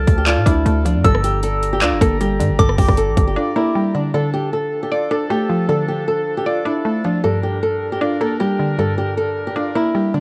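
A worn, warbling cassette haze with digital ambience wraps this brooding, dark half-time trap excerpt, where a fingerpicked flamenco guitar with audible finger squeak carries the melody over a woody, detuned FM pluck and distant, roomy woodwind chords, while a soft bell with chorus, phaser and delay glints above until 3.7 seconds and an overdriven trap kit with a hard-clipped kick and metallic hats drives alongside a punchy 808 bass until the kit drops out at 3.3 seconds and the bass at 3.4 seconds.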